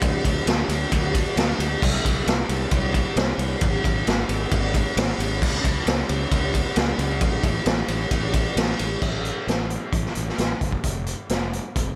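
A raw garage drum kit, up front and gritty with a boomy kick, medium-tuned snare, hi-hat, ride and crash cymbals, drives this brooding, dark quiet-loud alternative rock excerpt at 133 BPM in straight 4/4, while a fingered electric bass, overdriven into a growly fuzz, holds the low end from E#1 to D2 in a dry room, the sections shifting at 9.0 seconds.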